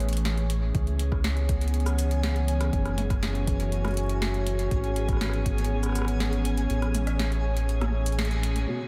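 A dreamy, reverb-soaked mix set in a cathedral-like space opens this eerie, melancholic IDM fragment at 121 BPM, where a warbly, nostalgic tape-like pad sustains dark, chorused chords from Amaj7 through C#m7 and F#m7 over a round, tube-saturated analog bass sitting up front. A booming analog drum machine with crisp snare, metallic hats, rim click, shaker and toms drifts through diffuse ambient delay, joined from 0.7 s by a deep electronic kick that drops out at 6.7 s, while a faint twinkling granular texture with octave-up shimmer glints in the background. A band accent lands at 8.2 s, and a felt-muted upright piano slips in at 8.7 s with a soft, boxy arpeggio note just as the clip is cut.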